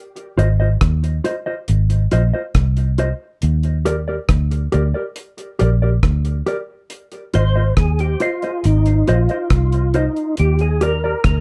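The production is dark and warm with little reverb, framing an uplifting roots reggae excerpt at 69 BPM in straight 4/4 that moves between Ab6 and Ebmaj7 chords. Up front, a deep, dry drum kit with a tight kick, hi-hat and rim click is joined by a round, foam-muted vintage fingered bass and a clean, compressed mellow electric guitar with tape echo. At 7.4 seconds a percussive tonewheel organ takes the melody, its third harmonic percussion colored by chorus vibrato, a slow rotary speaker and tape echo.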